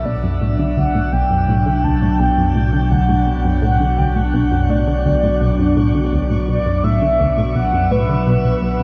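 A mellow, horn-like synth lead carries the melody up front, its round, warbling tone roughened by vintage 12-bit sampler grit and trailed by analog delay, over a swirling, nasal phased pad holding a B minor chord. This hypnotic, mysterious ambient fragment moves at 84 BPM in a straight 4/4, anchored by a deep, round sub bass and a punchy, funky analog bass riff that enters at 0.1 seconds with tape colour and a filter sweep. A faint, tempo-synced pulsing texture fades in high in the background, and the whole is steeped in a wet shimmer reverb with a 7.7-second tail.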